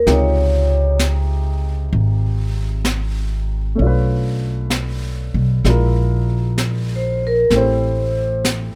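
A ringing, metallic vibraphone with medium mallets and its motor off carries the melody of this tender, late-night swung jazz ballad, sounding at 0.0 s and returning at 7.0 s, while a thumpy, up-front pizzicato upright bass, a warm upright piano accompaniment and a brushed kit with a high-tuned snare and hi-hat fill out a close, detailed, nearly dry short cut that moves from Dbmaj9#11 to Am7.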